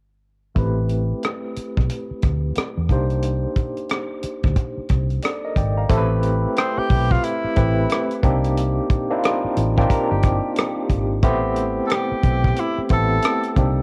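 A swung sixteenth-note groove at 90 BPM in 4/4 sets a sultry, late-night neo-soul and R&B mood in A minor, carried by a tight funk drum kit of hi-hat, kick and rim click that sounds natural and up front in a small room. Beneath it, a foam-muted fingered electric bass sits dark and round with punchy tube-saturated weight, while a barky tine electric piano through a combo amp shimmers with medium tremolo and a cassette-tape tint, alternating between Am9 and Cm9 harmonies. At 6.6 seconds a clear tenor saxophone takes the solo up front, played jazz style with a soft attack and vibrato, its line colored by analog delay and tape. A picked, compressed electric guitar through a small old amp adds a slightly broken-up second line in the background from 9.8 to 11.1 seconds. The whole cut, lifted from a longer piece, has the intimate feel of a home cassette recording, with light reverb, small room ambience and a faint mains hum.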